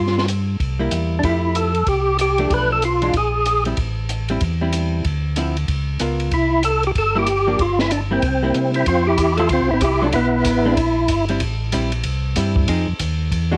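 A cassette-recorded home session in a moderate small room gives this brief cut from a soulful, greasy soul jazz organ trio its character, swinging in 4/4 at 189 BPM through a rich chord path from Fmaj9 and Bm7b5 to Db6 and Fm7. Up front, a fat, lightly overdriven tonewheel organ carries the melody with key click, third-harmonic percussion, chorus vibrato and slow rotary speaker, playing from 0.0 to 3.6 s and again from 6.3 to 11.2 s. Beneath it, a mellow, round second organ holds the bass line, a dark, clean, compressed hollow-body guitar comps from 0.8 s, and a compact cocktail kit with a punchy kick, high-tuned snare, hi-hat and ride sits low with a smooth, rolled-off top.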